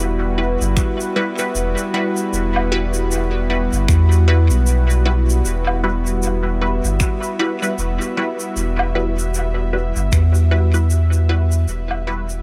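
A round, mellow sine sub bass sits up front in this deep, meditative ambient dub excerpt, holding down E minor at 77 BPM in 4/4 with a 58% swing on the sixteenths. Alongside it, a smooth, detuned sawtooth pad sustains an Emadd9 chord with a soft attack, long release and gentle chorus. From 0.4 seconds, a muted, resonant dub chord stab adds short, plucky, bright hits treated with phaser and dub echo. A layered, tape-warm electronic kick drum, re-recorded in a small room, gives a deep pulse until 10.3 seconds, while an acoustic kit of shaker, finger snaps and woodblock plays through its own dub echo. The whole mix sits in an intimate small-room ambience and fades out from 9.6 seconds.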